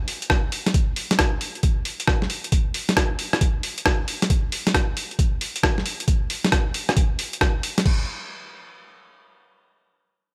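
A dry sound with little reverb and a small room ambience frames this late-night, bouncy UK garage excerpt at 135 BPM in 4/4 with a 65% swing on the sixteenths, where an up-front, compressed, pitched-down sampler-style drum kit of crash cymbal, hi-hat, rim click and a gritty medium-tuned snare enters at 0.1 s, joined at 0.3 s by an equally up-front and compressed, pitched-down electronic kick with a thumpy, tape-warm weight, before the music moves into a new section at 7.9 s.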